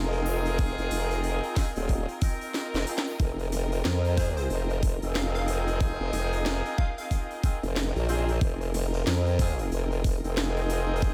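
A swaggering, funky glitch hop groove in F minor at 92 BPM with a swung sixteenth feel opens on an Fm7 chord: distant jazz-style horn stabs with sidechain pumping and tape echo, an up-front wobbling formant-sweep bass thickened by chorus and tube saturation, and a lush, bowed string section with vibrato and sidechain pumping sitting in the background. These are soon joined by a drum and bass kit with a cracking snare and crisp hi-hats and a knocking electronic kick, which drops out for a drum fill at 2.5 seconds. A catchy, punchy detuned square-wave lead with a filter sweep and tape echo then plays in the background from 4.2 to 7.1 seconds, all set in light reverb and digital ambience.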